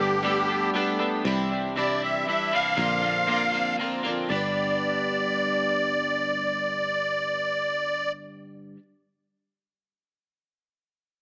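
Warm and jangly, this short folk rock and heartland rock excerpt moves at 118 BPM in 3/4 with a straight feel, centered on G mixolydian. A reedy musette accordion carries the melody up front, close-miked, dry and full with its shimmering wet tuning. A second accordion holds sweet, airy chords in the background with light tremolo tuning, and a smooth, vintage grand piano adds a very quiet accompaniment; both of these stop at 1.2 seconds. A bright, boxy plugged-in twelve-string acoustic guitar is picked with octave-doubled strings, a clean, compressed twelve-string electric guitar plays a riff with subtle chorus, and a fingered electric bass underneath sounds dark, round and punchy with a foam-muted tone. The harmony moves from Gadd9 through Cadd9 and Bbadd9 before landing on G, all heard through a small speaker sound in a small room with moderate echo chamber reverb.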